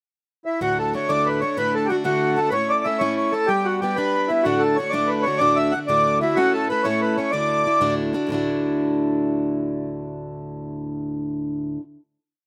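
A straight 6/8 jig rhythm drives this cheerful, lively Celtic folk piece, where an up-front, reedy, dark accordion carries a smooth, motif-based melody in period phrases from 0.5 to 7.9 seconds, while a bright, boxy plugged-in steel-string acoustic guitar with fresh strings and a slapback echo drives open-chord strumming that rings on through the final chord to 11.8 seconds, all captured dry outdoors with little reverb.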